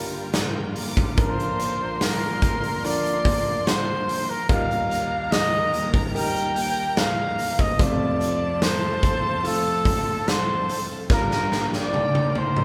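Tender and heartfelt, this pop ballad moves at a slow 73 BPM in 4/4 with a straight feel, set in Bb major and cut from a longer piece. A clear, woody upright piano carries the accompaniment from the start, joined by a very quiet picked steel-string acoustic guitar playing arpeggios, a lush bowed symphonic string section holding sustained chords, and a soft-attack studio violin section floating high in the background as a second line. A huge arena drum kit enters at 0.3 seconds, sitting up front with a punchy kick and a medium-tuned snare in a big, natural room. At 1.2 seconds a clear flugelhorn takes the melody with vibrato and a pop-style delivery, up front yet roomy. The harmony moves from Gm7 through Bb, Eb and F before returning to Gm7, where a drum fill begins at 11.1 seconds. The band sounds as if playing live together in one large studio with moderate reverb.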